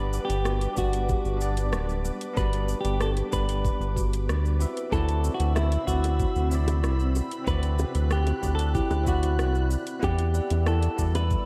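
Soaked in lush hall reverb, this dreamy excerpt of sunny, smooth sunset chillout at 94 BPM in G major sets a clean, compressed electric guitar melody with delay over a bell-like, barky tine electric piano with delay, an ethereal pad with chorus and tremolo in the background, soft, woody kalimba arpeggios with delay and a deep, round analog bass up front, while a tape-warm R&B kit of metallic hi-hat, rim click and shaker is joined by a knocking electronic kick at 0.8 s and tight, high-tuned bongos at 4.9 s over chords moving from Gmaj7 through D13 to Em9.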